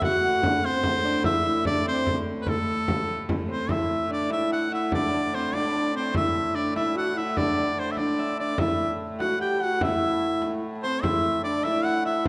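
A bright shawm sits up front in folk style, its soft-attacked, scooped notes carrying the melody of this mysterious, ancient-sounding medieval dance in A dorian, moving at 98 BPM in a straight 6/8. Beneath it, an airy, warm, tongued wooden-headed alto flute, unsteady and colored with vibrato, and a fingerpicked, ringing concert harp in the background carry second lines, while a clear, nasal hurdy-gurdy holds a biting, earthy drone on A2 and a frame drum played with soft hands adds warm percussion. A wet recital hall reverb surrounds the ensemble, and the opening phrase gives way to a new section at 3.7 s in this short passage cut from a longer piece.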